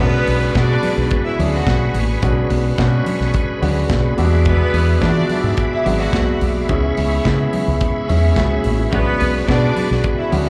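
A straight 4/4 disco groove at 108 BPM drives this danceable excerpt in B dorian, anchored by a round, punchy fingered electric bass sitting up front, a studio drum kit with a tight kick, medium-tuned snare and hi-hat, and very quiet, high-tuned congas with a vintage, band-limited snap. A clear concert grand piano with deep bass and long sustain accompanies through the Bm69, E7 and C#m7 changes, while a biting, intense bowed string section carries a second line with light vibrato, and both share a slapback echo. Above them, a bright, reedy tonewheel organ holds sustained chords, lightly overdriven with chorus vibrato, key click and a slow rotary speaker, and the performance sounds like a live gig heard through a club's PA, with small-room ambience and club reverb.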